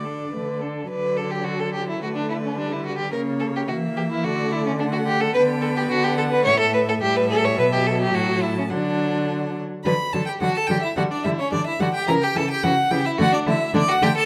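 Quick classical-period string quartet movement in D major at 108 BPM in 2/4, graceful and cheerful, in which a clear first violin carries the melody over a smooth, rich second-violin line, a soft-attacked viola accompaniment and a warm cello bass, the viola and cello shading their parts with expressive portamento while each player uses vibrato, heard through close, detailed microphones in a moderate recital hall reverb.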